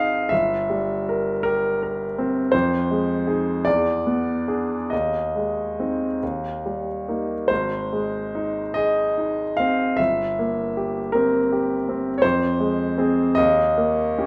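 Flexible rubato in 4/4 gives this serene, nostalgic romantic nocturne a slow, unhurried pulse, carried entirely by a solo grand piano that sits up front with a brilliant, intimate tone, long sustain and audible action noise. The harmony drifts from C7/G through Fm7 and a colouring E7 before settling on Ab/Eb, Eb and Ab, then returns to C7/G at 10.0 seconds and closes on Eb5 at 13.4 seconds. A wet recital hall reverb surrounds the polished piano in this short fragment of a longer piece.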